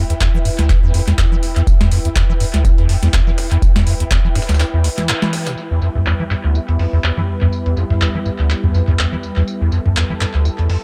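A squelchy, resonant acid bass riff with tube saturation and tape echo drives this trippy acid house excerpt in E minor at 123 BPM, over an overdriven deep kick that stops at 4.2 s, a booming analog drum machine with crisp snare and metallic hats, a gritty sampler-style kit with tambourine in the background, and an ethereal, airy pad, before a break at 4.6 s gives way to a thick, warbling unison pad entering at 5.6 s in a light, echo-heavy mix.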